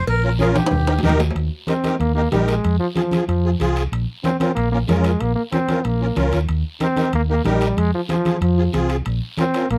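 A driving cumbia groove in straight 4/4 at 187 BPM opens this danceable slice of a longer Latin piece, carried by ringing, close and dry cowbell and timbales, a raspy guiro and bright, low-tuned congas with a thin-skinned, vintage, band-limited tone. A short-scale hollow-body electric bass sits up front with a dark, round, amped sound, anchoring the Bb minor harmony as it moves through Eb and Fm. A reedy, breathy melodica with a nasal, boxy character sounds only briefly at the very start, while a musette-tuned accordion shimmers throughout as up-front accompaniment. A drum fill from 0.6 to 1.4 seconds leads into the second section, where a bright, punchy trombone enters at 1.7 seconds and takes a solo with light vibrato and a smooth top. The close, detailed recording carries a light reverb, keeping the dense dance band clear.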